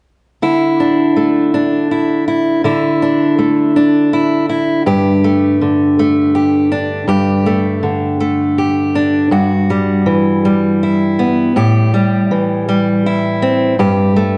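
This folk excerpt has a hopeful, anthemic mood, moving at 54 beats per minute counted in dotted quarters within a straight 6/8 metre, tuned to A4 = 441 Hz. A fingerpicked steel-string acoustic guitar carries the accompaniment from 0.4 to 14.4 seconds, ranging from G2 to G4 with a warm, concert-quality tone placed up front in the mix. Its harmony drifts through open, suspended colours, moving from Dsus2 to Gsus2 at 4.9 seconds, then through Emadd9/G and Am7 before settling back on Gsus2 at 13.8 seconds. A wet scoring-stage reverb with a 2.2-second decay surrounds the sound, lending it a sense of spacious grandeur, while a faint mains hum sits beneath.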